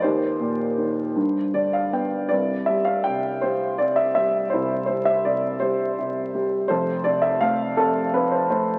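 A dark, mellow grand piano sits up front and plays alone in this calm, peaceful classical fragment, a lyrical solo in C major at 54 BPM in a rubato 6/8, cut from a longer piece. A brief piano fill from 1.2 to 2.3 seconds leads into the second section, where the harmony settles on Cmaj7 and later moves to Fmaj7 at 6.7 seconds. A long, wet plate reverb and the crackle of a very old 78 rpm record lend the sound a vintage haze.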